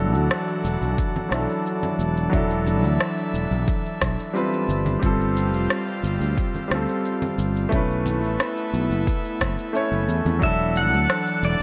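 Relaxed and wistful, this sunset chillout excerpt rests on a dark, mellow grand piano with tape echo, an airy, breathy pad with chorus, and a round, up-front fretless electric bass, moving through suspended ninth chords in a moderate concert hall reverb. A deep, layered electronic kick drum and produced electronic cabasa and rim click set a straight groove, while bright, hard-handed congas sit in the background. Near the close, at 10.4 seconds, a clean pedal steel guitar played with fingerpicks and slide enters up front with volume swells and tape echo.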